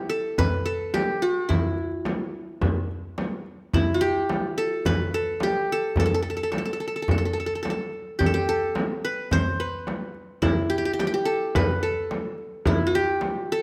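A straight 4/4 pulse at 108 BPM, carried from 0.4 seconds by a crisp metal-shell darbuka played with hard hands in a small room and a deep frame drum struck with soft hands in a large room, drives this melancholic, longing Arabic maqam ensemble passage in E maqam bayati, tuned to A4 = 441 Hz and cut from a longer piece, while an up-front, plectrum-plucked qanun with a bright edge on its triple strings sings the melody between E4 and C5 from the first moment, all set in light reverb and captured with close, detailed microphones.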